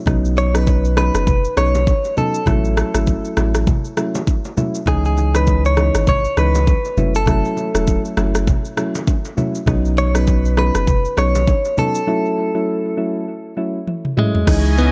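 A sultry, hypnotic afrobeats excerpt at 100 BPM with a swung 16th-note feel, where soft, round electric-piano-like synth keys with chorus and tape echo move through chords of Badd9, A6, C#madd9 and F#m7 over a punchy, deep sub bass and an electronic afro-pop drum kit with a deep kick, rim click, shaker and toms. A bright, clean electric guitar recorded direct carries the melody up front through spring reverb and tape echo, while congas and bongos sit in the background until 11.9 seconds. A break arrives at 12.1 seconds with a drum fill, and a bowed string section with a reedy, gut-string tone enters at 14.5 seconds, all in a dry, echo-heavy mix.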